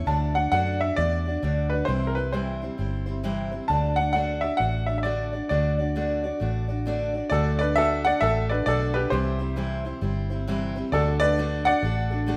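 A picked steel-string acoustic guitar with fresh strings and a dark, foam-muted vintage electric bass open this heartfelt, down-home honky-tonk cut, with an upright piano joining almost at once to carry the melody. The piano is the brilliant, woody voice up front, slightly detuned with short sustain and audible action noise that gives it an intimate, saloon-bar character. Beneath it, the bass sounds round, amped and punchy, while the guitar fills in the accompaniment with a bright auditorium-style tone. The music moves with a swung eighth-note feel, shifting between D and C chords, and turns to a new section at 7.3 seconds. A moderate large-studio reverb places the trio in a roomy space, and the clip ends at 12.4 seconds, cut from a longer classic country piece.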